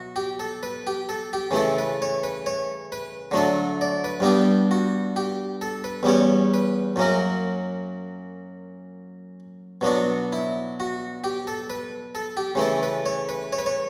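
Classical baroque-style suite movement in a slow, rubato triple metre, cut from a longer piece, where a solo harpsichord with a bright, airy, plucked Italian-style voice on a single set of strings sits up front across its range, moving through solemn, flowing harmonies that arrive at B minor near 9.9 seconds, all bathed in the generous reverb of a recital hall.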